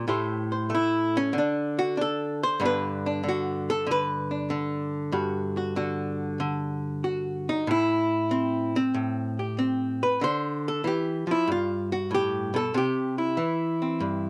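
Warm and relaxed, this short solo jazz excerpt swings at 95 BPM in G major, with a clean, dark, compressed hollow-body archtop guitar, picked and sitting up front in a dry, close 1970s-style studio sound, moving through chords such as Am7, Gmaj7, Dmadd9 and C across two matching sections that turn at 7.7 seconds.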